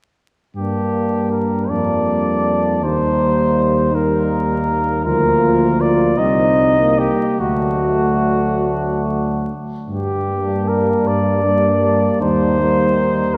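A distant, roomy flugelhorn sounds a second line at 0.5 s, and the mellow cornet soon carries an elegiac, yearning melody up front with light vibrato, over a punchy solo trombone, a tight, smooth-topped trombone section in the background and a warm tuba bass, in a hymn-like classical brass band passage in a rubato 6/8, heard through a reverberant church acoustic with vinyl crackle.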